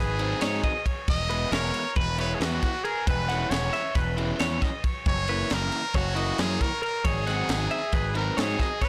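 A brilliant, forceful trumpet melody with vibrato and scooped notes opens this playful, bright math rock and midwest emo passage at 271 BPM in 9/8, over twangy, compressed twelve-string electric guitar arpeggios and a growling, overdriven fingered bass up front, joined at 0.2 seconds by a double-tracked overdriven guitar riff and a crisp fusion drum kit with a high-tuned snare, punchy kick, crash and ride, all moving from G#7sus4 through Eadd9, C#m7/E and F# back to G#7sus4 in a dry, blown-out recording.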